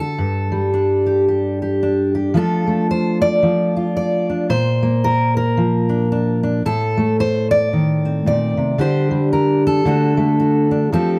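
A fingerpicked steel-string acoustic guitar carries this reflective, intimate folk piece alone, its full-bodied jumbo tone sitting up front in a dry, closely miked sound that catches fine detail. Set in G minor at 112 BPM in 4/4, the playing has a light swing on the eighth notes, and the guitar ranges from G2 up to D5. The passage opens on a Gsus2 before moving at 2.4 seconds into a longer second section built on F6, Bb and Adim. It then settles onto G5/D and closes on a D chord at 9.9 seconds. Cut from a longer piece, this short passage feels like an intimate, personal moment.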